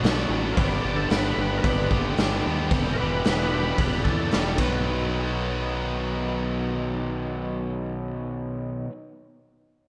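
A big arena sound wrapped in a lush hall reverb gives this driving, swaggering classic rock fragment, cut from a longer piece, a large and spacious feel. An up-front, double-tracked overdriven electric guitar plays a bright, picked riff in a straight four, while a fuzz-laden fingered electric bass adds a round, overdriven low end underneath. A raw garage drum kit, with a punchy kick, medium-tuned snare, hi-hat and ride cymbal, sounds saturated and gritty, with a rolled-off top, before dropping out at 4.7 seconds. Over the chords Bm, G and Em, a thick, overdriven tonewheel organ takes a solo through the first section, coloured by chorus vibrato, a slow rotary speaker and slapback echo. From 4.8 seconds the second section rests on the guitar and bass alone, which carry on until the fragment is cut off near 8.9 seconds.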